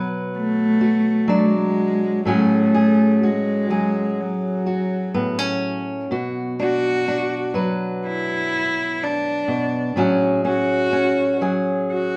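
Acoustic folk-pop ballad, heartbroken and melancholic, cut from a longer piece and played live in one room with a wet, large studio reverb. A dark, fingerpicked steel-string acoustic guitar sets up the accompaniment from the start, moving between Bm and F#madd9/A. At 0.4 s a single bowed cello, placed up front, enters with an intimate, airy sul tasto melody, soft in attack and touched with light vibrato.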